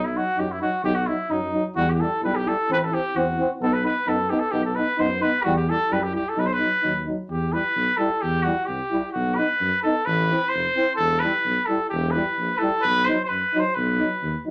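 A brisk, straight 2/4 pulse at 130 BPM drives this bittersweet, virtuosic Balkan brass band excerpt in B phrygian dominant, where an up-front vintage trumpet carries the melody over a dark, smooth-topped tuba bass with light vibrato and two euphoniums, one close-miked with light vibrato and the other distant and roomy, all in a classical style and set in a short club reverb as the chords move through B, Em and Am across the two sections that turn at 7.3 seconds.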